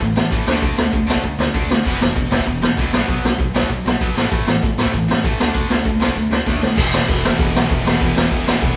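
An energetic, rebellious punk rock fragment, cut from a longer piece, driven by an up-front, gritty, saturated raw garage drum kit with a boomy kick, medium-tuned snare and rolled-off top, while a bright overdriven electric guitar and a tight distorted guitar play riffs behind it over a growly picked electric bass, a drum fill at 6.5 seconds leading into a new section at 6.8 seconds where a double-tracked fuzz guitar joins, all played live in one room with light reverb.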